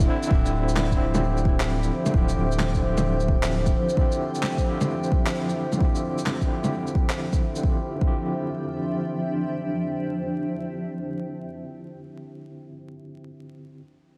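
A ghostly, nocturnal future garage excerpt in D minor at 131 BPM opens on a Dm11 chord, with a barky, overdriven tine electric piano shimmering through fast tremolo, delay and a filter sweep. Beneath it, a cloudy granular pad and a round sine sub bass pump with the piano against the sidechain, driven by a deep, up-front electronic kick in a swung 4/4. Tape-warm shaker, handclaps and bongos add texture. The sub bass stops at 3.7 s, the percussion falls away by 8.1 s and the pad drops out at 12.1 s, leaving the gritty piano alone in a dreamy, hall-soaked mix dusted with vinyl crackle.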